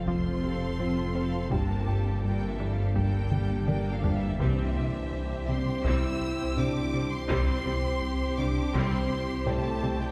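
A rich, close cello section carries the bass alongside mellow French horn chords in this brooding, futuristic hybrid orchestral and electronic film cue at 83 BPM in 4/4, cut from a longer piece. Lush bowed violins sing a focused melody over a smooth second violin line and viola accompaniment, with a woody, very quiet double bass section, a deep sine sub bass, a dark synth bass riff, a cloudy, evolving granular pad, a soft felt-muted upright piano and a tight, bright sequenced synth arpeggio. Very quiet taiko drums played with hard sticks add a fill from 3.3 to 4.4 seconds as the harmony moves from F through Gmadd9 to C, all heard from further back in a reverberant scoring stage.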